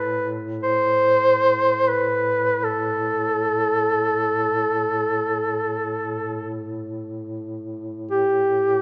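Solemn and mournful, this Caucasian folk lament is a brief cut from a longer piece, carried by two duduks that play together for all 8.8 seconds. Up front, a warm duduk sings the melody between G4 and C5 with vibrato, scooped notes and a smooth top, while a dark, quieter duduk holds a drone on A2, shaped by its own vibrato and scooped notes in the same folk style. A moderate reverb, as in a church or concert hall, surrounds both reeds.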